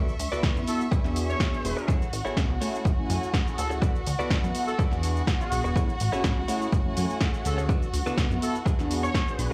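A dry, gritty sound with little reverb frames this sunny, feel-good slice of filtered disco house, cut from a longer piece and riding a straight 4/4 feel. A punchy electronic kick sits up front with a tape-warm analog edge. A drum machine adds hi-hat, shaker and snare, and a plucky, funky analog bass with transformer saturation and a moving notch filter joins at 0.1 seconds, both pumping against the kick. A mellow, detuned synth brass pad with chorus and phaser carries the accompaniment, while a rich, bowed violin section holds smooth sustained chords and a clean, direct-recorded electric guitar picks a compressed riff. A clear, tight horn section enters with the melody at 0.7 seconds, its vibrato trailed by tape echo. Underneath, the harmony cycles through D6, E7, Amaj7 and F#m7, keeping the groove bright and buoyant.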